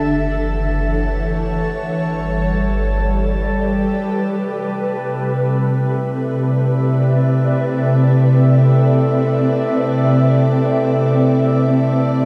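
Ambient music in free time, this luminous excerpt is cut from a longer piece and unfolds in a vast, echoing space with a long cathedral reverb. An ethereal, airy pad sits up front throughout, holding full-bodied, detuned chords that bloom slowly and fade on long releases, softened by ensemble chorus. Beneath it, a pedal harmonium breathes a reedy, dark drone for the full 12.3 seconds. For the opening 4.1 seconds, a round analog bass anchors the low end with deep, sustained tones, while a drifting glass-harmonics texture adds calm, glassy overtones until 4.2 seconds. The harmony moves from F#m7 to G, then settles on Cmaj7 at 4.2 seconds, leaving the pad and harmonium to carry the mellow, suspended close.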